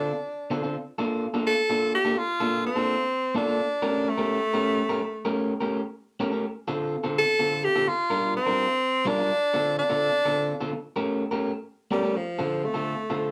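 Blues in a smoky, soulful mood, this short cut from a longer performance swings its eighth notes in four. A breathy tenor saxophone carries the melody and takes a solo from the start until 12.2 seconds, its clear tone colored by vibrato, scooped notes and a smooth top in a jazz style. Beneath it, an electric guitar at the edge of break-up plays a picked, compressed riff with a warm, slightly gritty edge, sitting up front alongside the horn. The harmony moves through minor-seventh and dominant chords, including a tense A7b9, before settling back on Dm7 as a new section begins at 12.2 seconds. The band plays live together in a small room, and a moderate reverb gives the sound an intimate, close feel.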